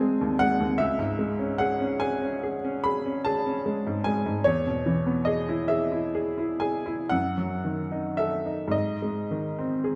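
A bright, woody upright piano sits up front, playing alone across its low and high registers in a wistful, yearning romantic nocturne. The phrasing in 9/8 is freely pushed and pulled with rubato as the harmony moves through minor, major and diminished colours before coming to rest on a dominant chord. A wet recital-hall reverb lends the brief fragment a lingering, spacious glow.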